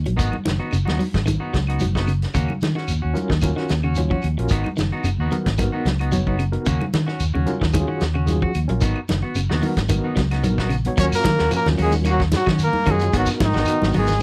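Funky and defiant, this dry, close afrobeat excerpt rides a round, dark fingered electric bass and a tight soul drum kit with a fat snare, while congas and woody claves sit in the background and a grainy shekere sounds distant, a clean, twangy electric guitar picks arpeggios under stabs from a second guitar at the edge of break-up, a barky overdriven tine electric piano with fast tremolo joins at 3.1 seconds, and at 11.0 seconds a warm trumpet melody with vibrato arrives up front over a brilliant trombone second line.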